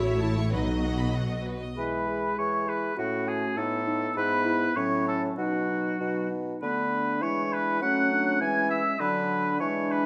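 A spirited, graceful classical-period orchestral excerpt opens with lush bowed strings, violins, violas, cellos and double basses, over a dark clarinet in the background, before the strings fall away by 1.8 seconds and a clear oboe, hollow silver flute, up-front bassoon and tight, mellow French horns carry the music on in a moderate scoring-stage reverb.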